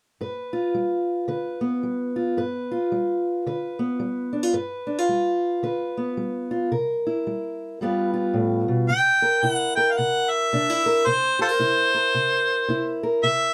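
Gritty and soulful, this short excerpt of acoustic country blues swings easily in 4/4, opening with a dark, boxy fingerpicked parlour guitar up front, moving from G7 to C7 and back. At 8.9 seconds a jazz-style harmonica steps in to carry the melody as a solo over the continuing guitar, its tone marked by light vibrato and tongue slaps, sounding distant and roomy yet up front. Close, detailed microphones and light reverb keep the sound intimate.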